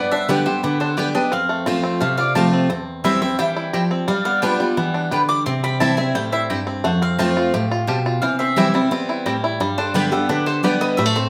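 This driving, joyful bluegrass fragment is cut from a longer piece and played by a band performing live together in one room, set in a wet studio reverb. A picked mandolin carries the melody with a woody double-string tone, while a second picked mandolin sits in the background adding bright stabs from 0.3 s to 10.7 s. Up front, a full-bodied dreadnought steel-string acoustic guitar lays down bright picked accompaniment. Beside it, a twangy, percussive banjo played with fingerpicks plays arpeggios. A mellow lap resonator guitar with fingerpicks and slide adds a metallic, nasal second line further back. The harmony moves through G, F, C/E, G7 and C before shifting into a new section at 6.8 s that passes through F, C and G.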